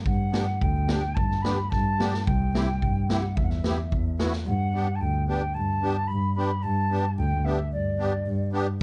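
A straight 4/4 pulse at 110 BPM opens this short klezmer cut from a longer piece, and the tempo keeps speeding up throughout its roughly 8.8 seconds. The street-band drum kit, with its boomy kick, medium-tuned snare and rolled-off top, plays up front in a small room until 4.5 s, while a single bowed double bass, dark and woody with vibrato, holds the low end close and up front. A musette accordion, reedy and shimmering in its musette tuning, supplies the accompaniment from 0.3 s, moving through G, C and E minor before returning to G as the phrase repeats. Above it an airy concert flute carries the melody with tongued, expressive vibrato, sounding distant against the forward rhythm section. The mood is festive yet bittersweet, and the production is dark and nearly dry, with very little reverb.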